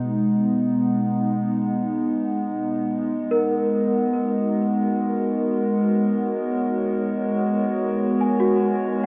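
A dark, warm production bathes this serene ambient fragment, cut from a longer piece, in a huge, wet reverb with a long decaying tail. A warbling, tape-like pad carries the harmony in sustained chords and sits up front. Its detuned, wave-folded tone has a slow attack and long release, with chorus and its own reverb giving it a nostalgic, vintage lo-fi character. The chords move from B6 to G#m11 at 2.7 seconds, in a straight 4/4 feel. At 3.3 seconds a worn celesta enters with delicate, bell-like arpeggios, its sweet, bright tone struck with hard felt hammers, slightly out of tune and carried on a tape echo. Sitting lower in the mix than the pad, the celesta adds an airy glimmer until both parts close at 9.1 seconds.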